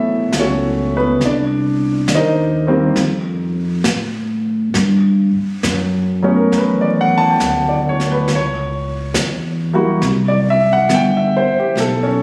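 An intimate grand piano with audible action noise and a woody pizzicato upright bass open this tender, romantic jazz ballad excerpt at 68 BPM with a swung feel, joined at 0.3 seconds by a dark, smooth brushed drum kit with a rolled-off top on snare and hi-hat, as the chords drift from F#m7 through Gmaj9#11 and C#dim under light reverb, all captured on a phone recording made in the room.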